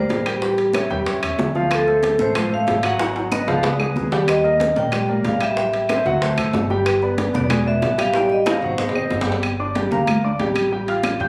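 A straight 4/4 pulse at 186 BPM drives this sultry, sophisticated Afro-Cuban jazz excerpt, with ringing high-tuned congas, tight bongos and woody claves sitting in the background, close, dry metal-shelled timbales, and a pizzicato upright bass on steel strings. Up front, an intimate concert grand with deep bass, long sustain and audible action noise accompanies a dark, smooth vibraphone played with medium hard mallets and the motor off, moving through rich harmony from A7b9 to Gm9, with drum fills at 3.0 and 8.1 seconds. The vibraphone takes a short solo from 9.4 seconds, and the phone-in-the-room recording adds moderate large-studio reverb, club ambience and compression.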